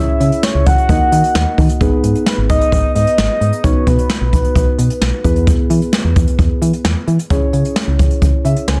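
A dense, heavily limited mix with light reverb carries this driving, cool synth-pop excerpt, where a full, mellow octave-layered synth lead with chorus, vibrato, tape echo and plate reverb sings the melody until 5.2 seconds over intimate, muted felt-like synth keys, a punchy, dark FM bass and an up-front jazz brush kit with a boomy kick and a softly clipped snare, the keys adding a short fill from 8.2 seconds.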